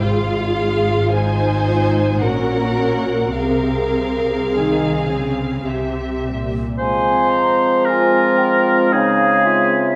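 Muted strings open this slow, elegiac passage in F minor, cut from a longer romantic movement for symphony orchestra and moving in a rubato 3/4 at around 51-58 BPM. Con sordino violins carry a veiled, distant melody above a second violin line. Beneath them, violas fill in the accompaniment, and the cellos and double basses share a dark, vibrato-laden bass, the double basses adding a lush depth. At 6.8 seconds the strings give way to the winds: an airy small flute group and an up-front oboe with light vibrato take second lines, a warm bassoon supplies the accompaniment, and a mellow French horn section holds sustained chords. A bright clarinet joins with its own second line at 7.9 seconds. The whole passage sits in the wet reverb of a scoring stage, lending the melancholic harmony a roomy, spacious glow.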